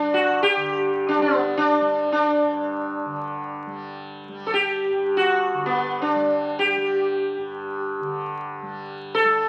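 Through the crackle and light reverb of a very old 78 rpm record comes this radiant, devotional fragment of Hindustani classical music in free time, cut from a longer piece, where a bright, plectrum-plucked sitar with buzzing, shimmering sympathetic strings sits up front, carrying the melody between B3 and A4 over a mellow, softly plucked tanpura drone that rests much lower in the mix, spanning G2 to G3 for the full 9.5 seconds.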